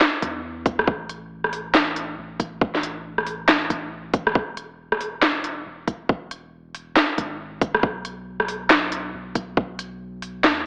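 Deep dubstep at 138 BPM with a half-time, swung sixteenth feel, dark and heavy, this short cut from a longer piece pairs an up-front garage drum kit of cracking snare, crisp hats, rim clicks and handclaps with a tight, tape-warm electronic kick, both re-recorded in a large room, over a soft, round dub sub bass with tube saturation sustaining between E1 and E2, all bathed in a moderate spring reverb and an AM radio tone.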